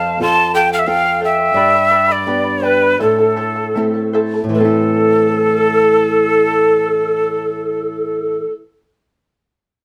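Melancholic and earthy, this short Andean folk excerpt in A minor moves in a straight 4/4 at 74-90 BPM, easing back over its first 4.6 seconds as the chords pass from F to G to A minor. A breathy cane quena carries the melody up front, close-miked with vibrato, tongued chiff and an unsteady tone, while a reedy bamboo pan flute sits in the background on a soft-attacked second line. Beneath them a fingerpicked charango adds a shimmering sparkle from its doubled strings and a small-sounding nylon-string guitar fills the low end, the band playing live together in one room with moderate studio reverb.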